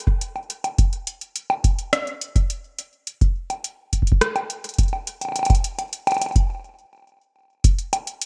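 A deep, analog electronic kick drum sits up front in this intricate, melancholic IDM fragment, running from 0.1 to 7.8 seconds in a straight 4/4 pulse. An electro analog drum machine plays bongos, rim clicks and metallic hi-hats through gated reverb, while the overall mix stays bright and dry in a 1980s-style digital manner. The groove halts in a stop from 6.5 to 7.6 seconds before the drum machine closes the cut at 8.3 seconds.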